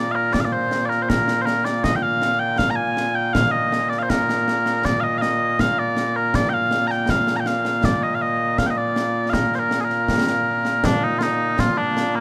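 A mellow, sweet set of small bagpipes carries the continuous, vibrato-laden melody up front in this proud, ceremonial excerpt of traditional Scottish pipe music at 80 BPM in 2/4, with concert snare drum and concert bass drum, their dark cymbals set in a small room, playing beneath from 0.3 seconds under a light reverb.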